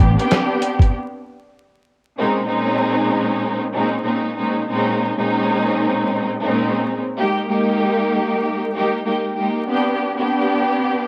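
This short cut from a longer piece has a homemade cassette sound, with vinyl crackle, light reverb and a small room's ambience. It is a reflective yet tough boom-bap hip-hop groove in Bb minor at 96 BPM in 4/4, with a 58% swing on the sixteenths and tuning set to A4 = 435 Hz. A gritty, compressed, sampler-style soul drum kit with a thumpy kick, medium-tuned snare and hi-hat punches in up front at 0.2 s, then drops out after 0.9 s for a break. A lush bowed string section carries the accompaniment throughout, expressive with vibrato and portamento, its smooth top filtered and tape-coloured. The harmony moves from a rootless Am11 into Bbm11 as the second section begins at 2.2 s, then shifts through Ebadd11/Ab and Gadd11/B.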